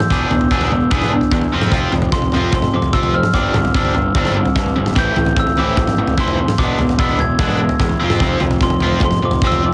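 Bittersweet and cool, this indie rock excerpt moves at 148 BPM in a straight 4/4, with a raw, double-tracked garage guitar riff, bright and overdriven, sitting up front alongside a loose, punchy acoustic drum kit of kick and toms. A fuzz-laden picked electric bass enters at 0.1 seconds to add warm, overdriven weight, while a mellow glockenspiel played with soft plastic mallets rings out a bell-like melody through digital delay. The chords cycle through E7, F5, Gsus4 and Am7 under light reverb and small room ambience, and the whole mix carries a heavily compressed, radio-like sound.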